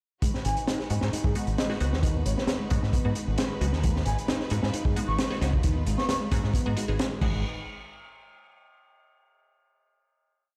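A growling, overdriven fingered electric bass drives this energetic, swaggering breakbeat track at 133 BPM in G# dorian, its funky syncopated line sitting up front beside a crunchy, punchy looped breakbeat kit with dark cymbals and a high-tuned snare, while a reedy electric piano repeats a fast-tremolo step-sequenced riff, filtered dub chord stabs with phaser and delay move one shape in parallel, a lush studio string pad pumps in the background, and an airy baroque flute with AM radio grit offers short answering phrases over a held G#m7 until a final hit at 7.4 seconds, all heard through a big sound system in a bare stone room.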